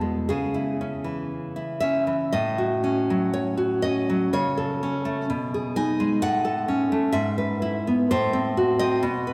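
A lone nylon-string guitar opens this short excerpt of a romantic piece for solo classical guitar, fingerpicked and placed up front with a bright, full-bodied tone. The mood is sunny and warm, moving in a flexible rubato around 53-64 BPM in 2/4. Its harmony drifts from C#m through F#m/A and A/C# to G#m/B, then on to E/G# before settling on F#dim/A near 8.1 seconds. The guitar spans E2 to G#5, and small finger squeaks add a touch of intimacy to its deep classical voice. A long, wet church reverb of 3.4 seconds surrounds the instrument, giving the sense of a performance in a church or concert hall, and the passage breaks off at 9.3 seconds as part of a longer work.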